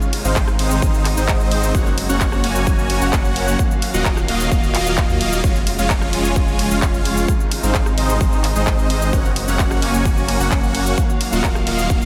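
Drenched in cathedral-sized reverb, this dreamy, heavily washed mix of festival progressive house feels euphoric and triumphant, moving in straight 4/4 at 130 BPM in a short cut from a longer piece. Huge, detuned supersaw chords sit up front with a bright, phased edge, a moving notch, sidechain pumping and tape echo, cycling through Ab, Gb, Ebmadd9 and Db/F. Beneath them a deep, thick sine sub bass carries tube saturation and the same pumping, while a punchy, layered electronic kick enters at 0.4 seconds to drive the groove. A big-room dance kit of cabasa, handclaps, hi-hat, ride cymbal and rim click fills in the rhythm. In the background, a dark, woody string section holds sustained, bowed chords with vibrato and a soft sul tasto tone, roughened by vintage 12-bit sampler grit and pumping too. A barely audible electronic swell passes briefly at 1.1 seconds.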